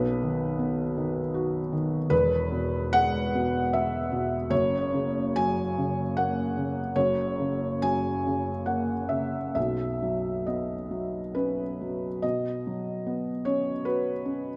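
A felt-muted upright piano plays alone in this wistful, melancholic neoclassical minimalist piece, its soft, mellow tone sitting up front and intimate within a moderate, lush hall reverb. In a rubato 3/4 at roughly 65-80 BPM, tuned to A4 = 439 Hz and ranging from E1 to G#5, the harmony moves from B through E and F# before settling on Badd9 at 9.6 s, and a new passage begins at 12.2 s. The rough home-demo mix keeps this brief cut from a longer work close and unpolished.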